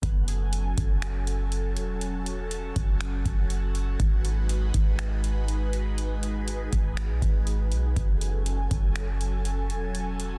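Atmospheric cloud-rap hip hop in a melancholic, ethereal half-time groove, where a breathy, detuned pad with chorus, phaser and sidechain pumping holds sustained chords over a deep, clean sine 808 bass and a booming analog drum machine with metallic hats, finger snaps and a soft-clipped snare, both up front, while a faint wind-like tuned noise texture drifts in the background through its own reverb, in a dense, heavily limited short cut from a longer piece that has a tape stop.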